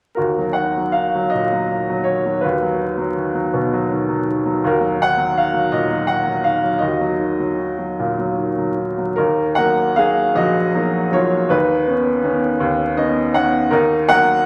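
A wet recital-hall reverb and a vinyl crackle surround this short, reflective classical excerpt for solo upright piano in E-flat minor, set in a slow 6/8 of about 50-56 BPM with a rubato feel. The piano sits up front with a clear, woody, vintage tone and long sustain, ranging from Bb1 to Gb5 as the harmony moves from Ebm through B/D# and Badd9/D#. The opening phrase returns at 9.2 seconds, and a brief piano fill from 12.6 seconds leads back to Ebm before the cut.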